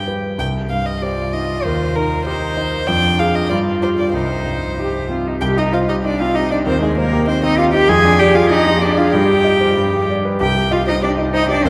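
A quick classical-period movement for piano trio, this short passage cut from a longer piece feels urgent and stormy in a straight two-beat metre. The rich violin carries the melody with a soft, pure, floating tone, played sul tasto by a single bowed player. Beneath it, the warm cello takes a second line, also bowed sul tasto with a soft attack and a smooth top, sitting a little more forward than the violin. A clear concert grand piano provides the accompaniment up front, with a deep bass, a natural sound and short sustain. The harmony circles around C minor, passing through diminished and dominant chords before settling back on C minor near 10.4 seconds, while a long cathedral reverb bathes the trio in the resonance of a church or concert hall.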